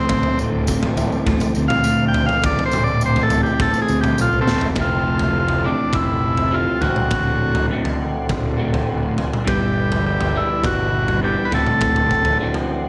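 A buzzy, overdriven combo organ leads this kaleidoscopic, hypnotic psychedelic rock excerpt at 102 BPM, playing a solo with slapback echo until 4.8 seconds, just after a drum fill at 4.5 seconds. Beneath it sit a slightly broken-up guitar riff with phaser, a growly fuzz bass, a gritty, up-front garage drum kit with a punchy kick, a jingly tambourine that drops out at 4.7 seconds, and a very quiet tonewheel organ holding chords through a slow rotary speaker, all set in spring reverb as the harmony moves from Am/D through Fmaj7, D7 and G6.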